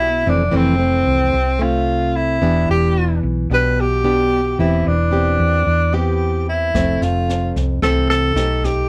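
A straight 4/4 bossa nova pulse at 111 BPM carries this melancholic, wistful excerpt, where a breathy, whispered tenor saxophone with subtone, vibrato and scooped notes sings the up-front melody over fingerpicked classical nylon-string guitar moving through Fmaj7, Em7 and Cmaj9/E chords and a round, hollow-body fingered electric bass, until a dark brushed drum kit with rim click, high-tuned snare and boomy kick slips in at 6.7 seconds, all captured close and dry.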